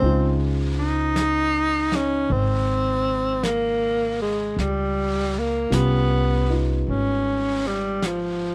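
Late-night and tender, this brief excerpt from a longer jazz ballad moves with a slow, swung 4/4 feel. A breathy tenor saxophone carries the melody up front, its close-miked subtone colored by vibrato and a slapback echo. Beneath it, a concert grand piano with a deep bass comps through the harmony, which shifts from Dbmaj9 to Db7#11 at 4.6 seconds. An upright bass plays pizzicato with a woody, dark tone from its steel strings, while a vintage drum kit sits low in the mix, brushes working the medium-tuned snare and hi-hat in a small room. The dry, close studio sound has a 1970s character, keeping the four players intimate across the full 8.5 seconds.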